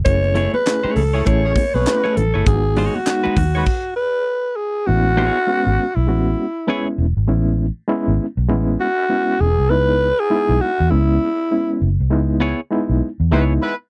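Sly and hypnotic, this dry, close 1970s-style funk cut at 100 BPM swings its 16ths over a round, foam-muted electric bass, while a breathy, raspy alto saxophone carries the melody above gritty, overdriven electric piano stabs with fast tremolo and twangy, clean electric guitar. A crisp fusion drum kit with punchy kick and high-tuned snare, very quiet congas and group handclaps, and a tight horn section in octave doubling fill the opening until a stop at 3.7 s, after which the harmony moves from F#m9 and G#m7 to Amaj9 and C#m7. A band accent arrives at 12.1 s, with guitar and horns back in as the piece is cut off.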